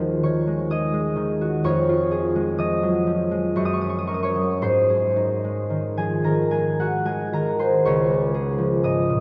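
A concert harp opens alone on an Ab7 chord over Eb, its fingerpicked strings ringing up front in a vast, wet cathedral space whose reverb lingers for about 5.3 seconds. This is a serene, graceful classical solo in Db major, moving in a gentle 3/4 at roughly 54-64 BPM with a flexible, rubato feel. The harmony settles onto Db over F at 1.7 seconds, then passes through Gb and Ab before coming home to Db at 7.9 seconds. The harp spans a generous range from Db2 up to Eb6, its acoustic tone warm and close against the echoing hall. Lasting just 9.2 seconds, this short passage is cut from a longer piece.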